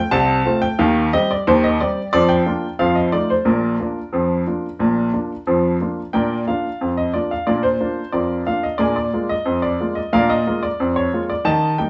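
Ragtime piano in B-flat major, this short cut from a longer piece moves at a jaunty, lively 90 BPM in a straight 2/4. A single upright piano carries everything as the solo part, spanning Bb1 to A5 with a clear, woody tone and audible action noise that gives it an intimate, up-front presence. The harmony opens on F and passes through Cm/Eb, Bb/F and F7 before settling on Bb at 3.5 seconds, then turns toward Bb7 at 8.8 seconds. A fresh section begins at 6.1 seconds and runs to the close at 11.9 seconds. The instrument is tuned slightly below standard pitch, at A4 = 439 Hz, and sits in a small room with light reverb that keeps the polished sound close and present.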